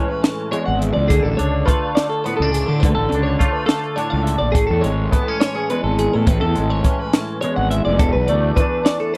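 Math rock and midwest emo in a straight 6/8 at 70 BPM in A major, this wistful, bright excerpt moves from Amaj7 through Dm and back before settling on E7sus4 at 8.0 seconds. A clean, twangy electric guitar carries the accompaniment under a chorus effect while a shimmering twelve-string electric guitar spins high arpeggios bathed in spring reverb, joined at 0.2 seconds by a compact cocktail drum kit with a punchy kick and high-tuned snare. A dark, round fuzz bass with overdrive enters at 0.7 seconds, all set in a dry, close 1970s-style studio sound.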